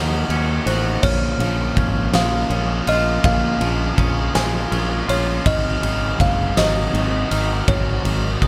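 This brooding, melancholic post-rock excerpt in Bb minor opens with a very quiet, reedy harmonium breathing sustained chords beneath a bell-like glockenspiel, struck with hard plastic mallets, and a bright, twangy clean electric guitar, both tracing arpeggios through analog delay in the background. Two overdriven guitars, one biting and treated with phaser, the other raw and garage-toned, play a picked riff in the same low-to-middle register, while a growly, punchy fingered electric bass sits up front. A huge arena drum kit arrives at 0.3 seconds, its fat snare, punchy kick, crash and ride sounding natural and big-roomed in the foreground. At 0.7 seconds a buzzing kalimba enters with a short, woody, thumbnail-plucked melody, mid-forward and echoed by analog delay. The slow 54 BPM pulse in 6/8 moves through Ebm7, Bbm7 and Ab7sus4, all wrapped in a dark production with a light touch of small-room reverb.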